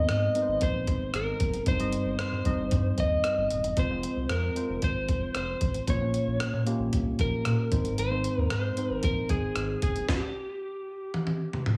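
Nostalgic and moody, this excerpt of 1980s-style pop sets a slightly broken-up, picked lead guitar melody with tape echo over a worn, slightly out-of-tune tine electric piano, a round, nasal analog bass and a gritty, pitched-up breakbeat sampler-style kit with a thumpy kick and gated reverb, before the piano and bass stop around 10 seconds and the drums close with a fill from 11.1 seconds.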